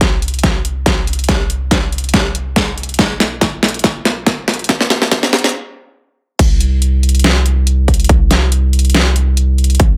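Lightly reverberant and high-pass filtered, this bright, euphoric future bass fragment in a swung half-time feel opens with a build-up where a punchy, overdriven electronic kick and an up-front dubstep kit with a deep snare, hi-hat and crash play a drum fill under a filter sweep, while a thick, saturated triangle sub bass pumps against the sidechain, before a brief stop at 5.5 seconds gives way to the drop at 6.4 seconds.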